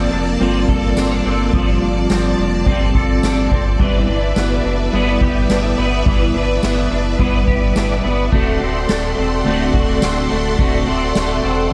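A moderate concert-hall reverb bathes this ethereal, dreamy dream pop excerpt, where a clean, twangy electric guitar plays accompaniment through harmonic tremolo and ensemble chorus, while a second picked clean guitar spins arpeggios through chorus and digital delay. A vintage string machine voicing violas holds bright, evolving sawtooth chords over a deep, sustained sine-and-triangle sub bass with an added octave, as the harmony drifts from Bbmaj9 to Gmaj13/F# and then D7. A soft-mallet drum kit sits in the background with a boomy kick, medium-tuned snare, dark ride cymbal and tambourine, and a very quiet, metallic vibraphone with its motor off rings briefly at the start before returning at 4.4 seconds.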